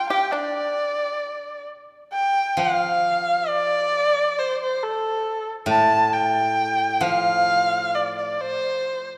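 In a free-flowing rubato 2/4, this graceful, tender fragment of traditional Chinese chamber music centres on a single up-front bowed erhu, warm and smooth with vibrato and sliding portamento, joined at first by a dry, percussive fingerpicked pipa that drops away at 1.6 seconds, before a bright, silvery steel-string zither enters at 2.6 seconds with ringing low accompaniment, all bathed in a lush concert-hall reverb.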